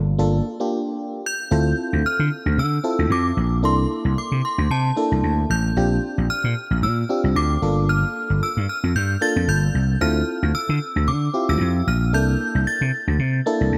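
Funky and danceable, this early-eighties boogie funk cut moves at 113 BPM in 4/4 with a light 16th-note swing in D minor, cycling through chords like Gm9, Dm9, C13 and Bb69. A growly, punchy slap bass sits up front from the start, joined at 0.2 seconds by a glassy FM electric piano with a bell-like attack and a chorus sheen, and a break runs from 0.5 to 1.5 seconds. At 1.3 seconds an inharmonic, ringing synth chime takes the high melody through ensemble chorus, phaser and delay, all bathed in a lush hall reverb that gives the mix a dreamy, soaked feel.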